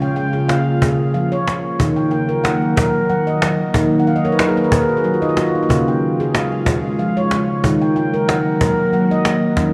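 A gently swung 3/4 pulse at 92 BPM moves this meditative world piece in Eb minor, cut from a longer work, with a woody, up-front cajon carrying faint snares and hard-handed strikes. A ringing stainless-steel handpan, played with soft fingertips, spins mellow arpeggios over chords shifting between Db and Ebm, adding a fill from 4.0 to 5.7 seconds. Beneath it an ethereal, detuned pad with slow attack and ensemble chorus holds sustained chords, all set in a dark, wet concert-hall space.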